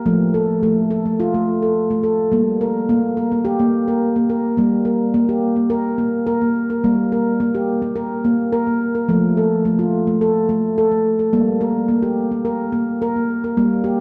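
Gentle and meditative, this world piece is carried entirely by a solo handpan, heard as a short portion of a longer work. The stainless steel instrument is played with the fingertips and sits up front, its ringing tones spanning F3 to Bb4 and trailed by a delay. A wet echo chamber reverb with a long 2.4 second decay surrounds it, and the production leans dark. The harmony moves between F and G minor, and a new section begins around 4.6 seconds before the same pairing of chords returns near 9.1 seconds. The steady, straight pulse and the lingering resonance give the passage a calm, contemplative character.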